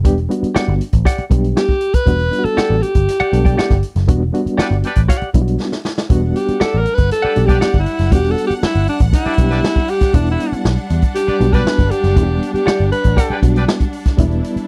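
A hypnotic, funky excerpt in E minor at 119 BPM opens with an up-front vintage drum kit with a punchy kick, a dark, foam-muted picked electric bass, and a worn, slightly out-of-tune reed electric piano playing fast-tremolo stabs on a rootless Em9; clean, compressed semi-hollow guitar accompaniment joins at 0.5 s and a breathy, whispered alto saxophone melody at 1.6 s, a tight horn section adds an octave-doubled second line, and after a band accent and drum fill, lush bowed studio strings sustain chords beneath the saxophone solo from 6.1 s, captured in a dry, close 1970s-style studio sound.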